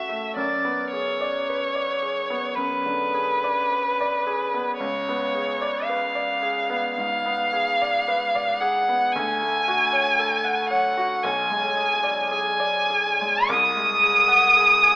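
The rhythm moves freely in a slow, rubato four, stretching and relaxing the pulse in a solemn, yearning romantic classical duo for violin and grand piano. A single bowed violin carries the melody from start to finish, its tone rich and smooth with an even vibrato, sitting up front in the balance yet carrying a slightly distant air. Beneath it, a concert grand piano accompanies throughout, bright and brilliant and anchored by a deep bass. The harmony passes through shaded chords such as G#dim/F#, C#7b9 and Dmaj7 before arriving at G#7/B# near 13.5 seconds. A moderate stage reverb lends a sense of space, while the whole fragment is filtered through an AM radio sound that gives it the feel of an old broadcast.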